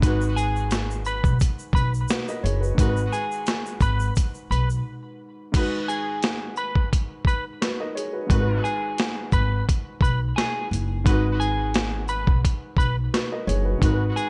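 A compressed, sampler-style boom-bap kit sets a swung 87 BPM groove in 4/4, with a thumpy kick, high-tuned snare, hi-hat, shaker and crash sitting up front alongside a woody pizzicato upright bass, while a grainy egg shaker rattles in the background until 4.8 seconds, and a break at 4.9 seconds leads into the repeat of the section at 5.5 seconds. Over a G#m7 chord in G# minor, a dark, mellow upright piano with a vintage tone provides accompaniment, and a tight, clear trumpet section with vibrato punches jazz-style stabs through tape echo. A clean, scooped electric guitar enters at 0.4 seconds with a picked melody, also tape-echoed, giving this dry cut from a longer piece a dark, gritty mood.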